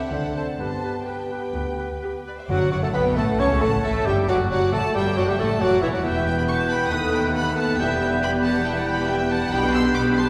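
Heard from further back in a reverberant concert hall, this brief cut from a quick, cheerful and graceful classical-period movement for symphony orchestra moves at roughly 126-139 BPM with a rubato feel, as chords such as D7, Gmaj9/F# and Em11 pass by. A rich, smooth violin section carries the melody over a focused, distant second violin line, while a clear, close-miked oboe adds its own line, joined in the background by a dark clarinet and an airy, hollow flute. A very quiet viola section and a mellow bassoon fill the accompaniment, warm French horns sustain chords, lush cellos and the double basses hold down the bass, and the timpani sounds on D3 from 2.5 to 3.1 seconds.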